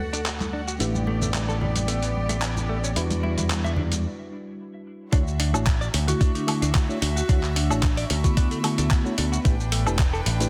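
A reedy electric piano, clear, biting bowed strings and a punchy, bright envelope-filtered bass open this feel-good, groovy nu-disco cut at 111 BPM in D major, with the strings and bass sidechain-pumping over Dmaj9, A9sus4 and Em9 chords. A gritty, overdriven sampler-style kit of handclaps, hi-hat, shaker and woodblock joins, along with a clean, compressed guitar riff carrying dub echo and soft-handed congas ringing in the background until a short break at 4.0 seconds. At 5.1 seconds the drop lands with a thumpy electronic kick up front, and a metallic, airy vibraphone melody with fast motor vibrato and digital delay floats in at 6.1 seconds, all within a dense, heavily limited modern mix.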